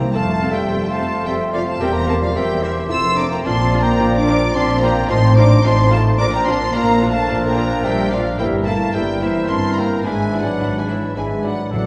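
A rich, lush violin section carries the melody of this stormy, restless classical-period orchestral movement in F major, a quick 3/4 at 109 BPM, over dark sustained French horn chords, a clear, close double bass section and a smooth cello section, while airy concert flute, a second, expressive violin section, mellow cor anglais and a warm clarinet add second lines above an even, very quiet viola section and a distant bassoon, with timpani on hard mallets heard only at the opening and again from 11.7 seconds, the orchestra heard from further back in a reverberant recital hall.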